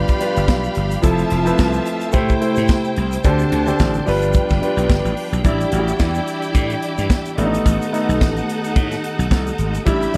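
Lush, bowed strings, a warm concert grand piano, a piping tonewheel organ with chorus vibrato and fast rotary speaker, and a growly, punchy slap bass open this sultry, danceable disco excerpt at 109 BPM with a 16th-note swing. A tight, dry funk kit of hi-hat, kick and snare comes in at 0.1 seconds, up front beside the bass and piano, while a grainy egg shaker sits in the background and the organ holds sustained chords behind the intense string line. Chords move from G7 through Fmaj7, Am7 and D7sus4 before a second section at 5.5 seconds shifts to Em7/A and B7b13/A, all set in a dark production with small-room ambience and light reverb.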